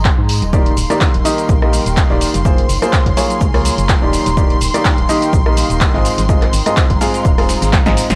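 A dry, gritty hardware recording with cassette-tape grain carries this euphoric, uplifting piano house excerpt in Eb major at 125 BPM with a light swing: a clear, worn baby grand riff with 12-bit sampler grit, tape echo and sidechain pumping sits up front over a hollow, organ-like FM bass, biting bowed strings and a soft, breathy pad in the background, all three of which also pump, while a punchy electronic kick, an analog drum machine of handclaps, hi-hat, rim click, snare and cabasa, faint tambourine and congas, and a very quiet sampler-style shaker and snare drive toward a drum fill at 7.7 seconds.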